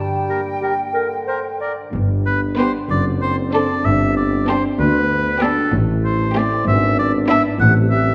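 Ringing harp arpeggios open this playful, whimsical film cue in a lilting 6/8, with a sneaky, magical air. A pure small flute group and a mellow, distant bassoon sound with the harp at first, while a roomy clarinet and an up-front oboe enter at 0.3 s, the oboe carrying on to the end of the excerpt. From 1.9 s a background French horn section holds sustained chords over bowed double basses, smooth cellos and a warm tuba, and at 2.6 s chamber violins take a focused, vibrato melody above a very quiet second violin line and lush violas, all set in a wet scoring-stage reverb as the harmony shifts from a minor chord to major.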